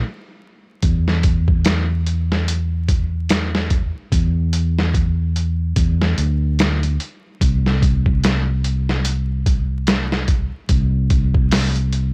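A dry, gritty recording with vinyl crackle and little reverb frames this hypnotic, brooding trip hop fragment, cut from a longer piece. After a brief silence, drums and bass both enter at 0.8 seconds and play through to 12.1 seconds at a slow 73 BPM in 4/4, with a light swing on the sixteenths. The sampler-style kit sits up front, compressed and pitched down, with a muffled, thumpy kick, a medium-tuned snare and hi-hat, all coloured by vintage 12-bit grit and the tape-toned character of a small-room re-recording. Beside it, a fingered electric bass, also up front, growls through an amp with tube saturation, staying low between B#1 and E2. The result is a heavy, murky groove that feels close and dusty.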